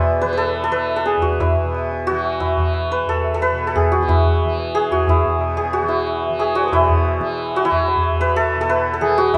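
Light reverb lends this short cut from a longer Hindustani classical performance a serene, devotional calm, with the hammered, shimmering santur sitting up front. In raga charukeshi on E at about 181 BPM in 4/4, and gradually speeding up, the santur carries the melody between E4 and E5 over a softly plucked, buzzing tanpura drone and a close, low-tuned, ringing tabla. The calm mood holds as a new passage begins at 6.7 seconds.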